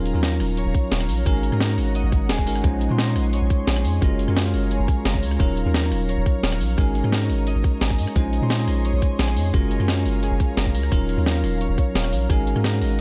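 Melancholic and dreamy, this liquid drum and bass excerpt at 174 BPM pairs a deep, sine-toned 808-style bass and a tight, layered electronic kick entering at 0.7 seconds with a gritty, pitched-up breakbeat kit of hi-hat, rim click and snare, while a bell-like tine electric piano with digital delay, an ethereal pad with ensemble chorus, reverb and sidechain pumping, and a ringing fingerpicked concert harp in the background carry chords moving through Ebm9, Bbm11, Gbmaj9 and Ab9sus4.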